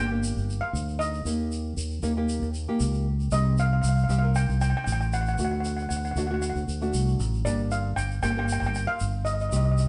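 This calypso has a moody, cool character, played in a straight four-to-the-bar feel and cut from a longer piece. A double seconds steel pan, struck with hard rubber sticks, carries the melody in a dark, shimmering, metallic voice that stays smooth throughout. Beneath it, a small fingerpicked nylon-string guitar supplies acoustic accompaniment. A round, fingered electric bass sits up front with a direct, amped tone, and a grainy, mellow tube shaker enters close at 0.2 seconds. The harmony moves from G minor through E-flat, C minor and D before returning to G minor at 7.5 seconds. The band sounds as if it is playing live together in one stone room, with a wet reverb and a softened top end.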